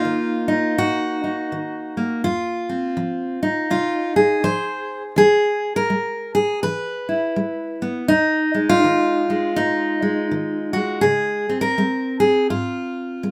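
A gently swung 4/4 at 82 BPM carries this wistful, intimate solo folk piece in Eb dorian, cut from a longer work and played by a single fingerpicked steel-string acoustic guitar that sits up front with an auditorium body and a warm tone, ranging from Eb2 to C5. The chords move from Ebm through Fm, E and Ebsus2 before shifting at 11.0 seconds to a Dbmaj7, all framed by a moderate studio reverb that keeps the sound close and personal.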